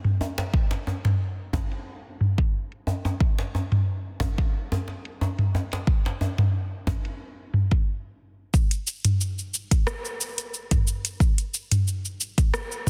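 Downtempo groove with a meditative feel, cut from a longer piece, carried entirely by drums and percussion over a lightly swung 4/4. An afro-pop drum kit of hi-hat, rim click, shaker and toms sits up front with a tape-warm, produced character, its metallic hats and other pieces softened by low-pass filtering. A deep electronic kick joins at 0.5 seconds and anchors the pulse through to the end. A djembe, acoustic and up front in a small room, adds a warm, deep tone with metal rattles until 7.0 seconds. After a brief stop, the groove returns at 8.5 seconds for a new section carried by the kit and kick. Light reverb surrounds a dense, heavily limited master, with a faint mains hum underneath.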